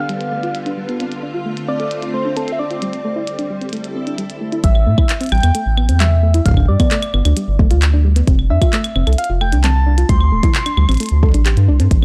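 IDM with an intricate, cerebral mood, cut from a longer piece, where a gentle, keys-like FM lead with chorus and tape echo carries the melody over silky string-machine chords and soft, detuned pluck arpeggios, while a glitchy kit of clicky hats, claves, handclaps and toms plays under low-pass filtering until a deep electronic kick and a dark, up-front, tube-saturated analog bass arrive at 4.6 s, the moment the strings fall away, all captured in a dry, gritty hardware sound.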